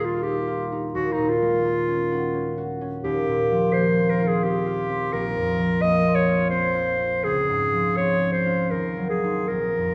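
This is an impressionist classical duo for clarinet and concert harp, hazy and wistful, moving in a flexible, rubato three-beat lilt through this short passage cut from a longer piece. A bright, softly attacked clarinet carries the solo melody up front, while the fingerpicked harp rings out beneath it in its low and middle range, drifting through colored chords such as Ebadd9, Gbmaj9/Eb and Dbmaj7 before settling on Ebm6 at 8.7 seconds. Both instruments sit forward, yet a wet recital-hall reverb places the listener further back in the room.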